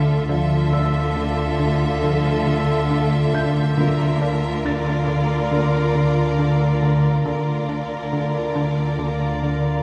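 Ominous and uneasy, this slow 69 BPM suspense film cue in 4/4 is cut from a longer piece and rests on a D minor add9 chord that shifts to Bb over D at 3.8 seconds, where very quiet, round soft-mallet timpani enter. Bowed chamber strings carry it, with an intense, clear violin melody above a rich second violin line, background violas, and a low foundation of cellos and lush, soft-attack double basses, while a punchy analog bass riff with ring-modulated filter plucks runs beneath. A glassy, chorused harmonics texture drifts in the background, joined by a faint felt-muted upright piano with audible action noise and a mellow French horn section entering at 0.3 seconds, all set back in a wet scoring-stage reverb.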